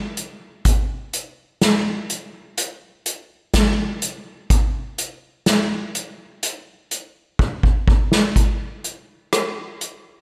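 Cathartic and brooding, this rock excerpt at 62 BPM in a straight 4/4 features a lone soft-mallet drum kit playing from 0.2 to 10.0 seconds, its punchy kick, medium-tuned snare, rim clicks and hi-hat heard with a distant, roomy studio character under light reverb, with a drum fill at 7.4 seconds leading into a brief new section at 8.4 seconds.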